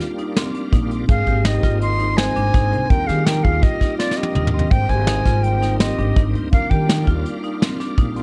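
Moving in a straight 5/4 at 166 BPM, this brooding, intricate slice of progressive instrumental band music rests on an airy, up-front brush kit with a punchy kick and medium-tuned snare, woody pizzicato upright bass entering at 0.7 seconds, medium-hard marimba arpeggios, and a shouting tonewheel organ with chorus vibrato and slow rotary sitting in the background, all moving through Ebmaj9, Ab and Abmaj7 harmony. From 1.1 to 7.1 seconds a pure, reedy silver flute carries the melody while a close-miked, dark flugelhorn with light vibrato adds a second line, and a drum fill at 4.0 seconds marks the midpoint. Light reverb, studio ambience and a cassette-tape grain color this short fragment cut from a longer piece.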